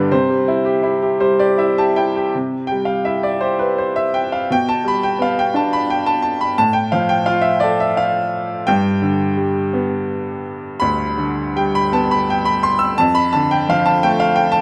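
Bathed in light reverb, this sunny, lyrical classical piece for solo upright piano, a brilliant, woody, up-front instrument with long sustain, unfolds in a rubato 3/4 at 76-88 BPM in C major, opening on C, with a fill from 0.8 to 2.3 seconds leading into a longer passage that moves through G/B, Fmaj13/A and G before settling on Dm/F as this cut from a longer work closes at 14.6 seconds.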